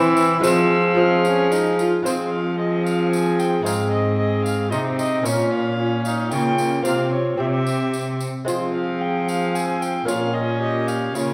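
A rich, up-front cello anchors this solemn, courtly renaissance-style consort dance in F minor, moving at 112 BPM in a straight 3/4, while a dark, nasal, distant gut-string violin carries the melody high above. Two period-style violas fill the middle, one close with an airy bow on a second line and one in a reedy accompanying role, while a delicate fingerpicked lute with double strings sits in the background and a faint, jingly tambourine joins at 0.2 seconds. The excerpt moves through Fm, Ab, Bbm and Csus4, returns to Fm and then shifts to Bbm, all set in the lingering reverb of a recital hall.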